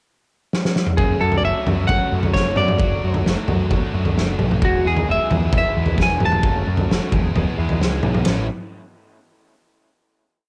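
A bright, clean semi-hollow electric guitar leads this short, carefree indie rock piece, playing up-front hook phrases coloured by spring reverb, analog delay and a cassette-tape tint before it drops out at 6.9 seconds. It moves at an upbeat 132 BPM in a straight 4/4, in A major. A loose acoustic drum kit opens with a fill at 0.5 seconds during the pickup bar, and it sounds distant and roomy, with dark cymbals, a fat snare, a tight kick and grooving toms. At 1.0 seconds the pre-chorus begins: one overdriven guitar strums biting chords while a second, crunchier one picks arpeggios in the background through subtle chorus and analog delay. Beneath them, a growling, overdriven electric bass plays octave lines. The harmony runs F#m, D/F#, Eadd9, back to F#m and then E before settling on a final A chord, and the whole piece carries the light reverb and homespun character of a cassette home recording.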